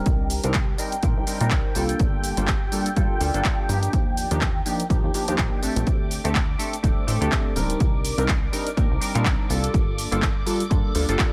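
A funky, mellow polysynth comp and a lush vintage string machine open this groovy, sensual filtered disco house excerpt, both pumping against the beat under a low-pass filter sweep that runs through its full 11.3 seconds, the strings shimmering with phaser and ensemble chorus over a Cm7 to Gm9 to Ebmaj7 to D7sus4 progression. From 0.1 seconds a plucky, decaying analog bass joins alongside a punchy, tape-tinged electronic kick and an overdriven, layered house kit of cabasa, handclaps and hi-hat, with a very quiet, distant tambourine far behind. The drums carry the ring of a large room, and the whole mix sits in a digital ambience.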